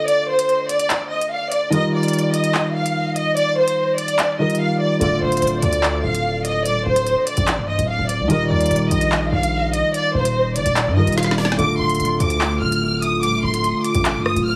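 A lush, bowed violin section carries the melody with vibrato and a touch of digital delay over a deep-voiced grand piano as this dark, menacing half-time drill excerpt opens, with woody snare, crisp hats, rim clicks and handclaps sitting in a dry, heavily compressed mix. At 5.0 seconds a distorted, saturated 808-style bass arrives, heavy and aggressive. At 12.4 seconds a moody, detuned analog pad with chorus adds sustained chords before the music cuts off.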